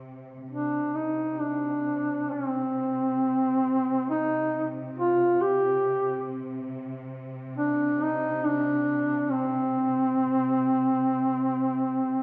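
Caucasian folk lament in free time and C minor, this mournful, longing excerpt opens on a muted string section holding a veiled, lush drone on C3, bowed con sordino with soft attack and vibrato. From 0.5 seconds a dark solo duduk takes the melody up front, moving between C4 and G4 in folk style with scooped notes and a trembling vibrato. The whole sits in the resonant reverb of a church or concert hall, lending the reed a roomy, distant glow.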